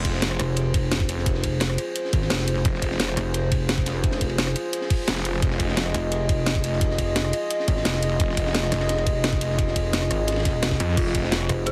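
This short excerpt from a longer piece has a heavily compressed, radio-like sound with light reverb and a touch of studio ambience. It is dark technical drum and bass at 173 BPM in F minor, aggressive and futuristic, sitting on a single F minor chord throughout. A deep, nasal analog pad holds sustained chords with chorus and sidechain pumping, while a pulsing pluck wobble bass stays up front, heavy and mellow with chorus, from 0.4 seconds to the end. A snarling distorted saw bass cuts in with growling, bright, resonant bursts, including one from 2.6 to 5.9 seconds. The drums layer a knocking electronic kick and a produced kit with a cracking snare, hi-hat, ride, rim click and crash over a very quiet, gritty breakbeat kit with dark cymbals and a high-tuned snare. At 11.0 seconds an eerie, inharmonic FM bell arpeggio appears in the background, carried by chorus, delay and sidechain pumping.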